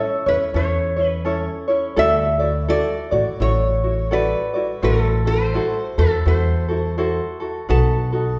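Bathed in a wet, hall-like reverb, this dreamy, relaxed Hawaiian fragment with a lazy swing sets a nasal, metallic resonator slide guitar played with fingerpicks over a light, fingerpicked tenor ukulele and a dark, woody pizzicato upright bass that joins at 0.3 s, both sitting up front as the chords drift from A through Dadd9 and Am6 to B7.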